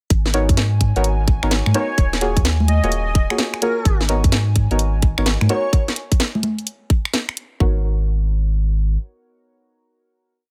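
A late-night, moody two-step garage piece opens on a deep, round sub bass skipping under a tight, up-front kick and a tape-warm kit of cracking snare, skipping swung hats, congas and finger snaps, while dark, nasal chord stabs with chorus and delay ride a rootless riff, an airy, breathy pad holds a high note in the background from 0.4 s with sidechain pumping, a dreamy, detuned lead with vibrato enters at 1.7 s, and the drums fall away as a final chord sounds from 7.6 s.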